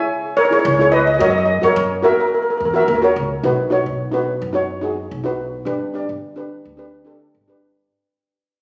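Captured on a phone in a wet recital hall, this bouncy, carefree calypso excerpt at 108 BPM fades out from 3.4 seconds onward. A metallic lead steel pan, struck with hard rubber sticks, carries the up-front melody until 3.1 seconds over shimmering double seconds played with medium rubber sticks in a boxy small-room sound. A woody pizzicato upright bass with steel strings joins at 0.6 seconds as the chords move through C#m, F#, B and G.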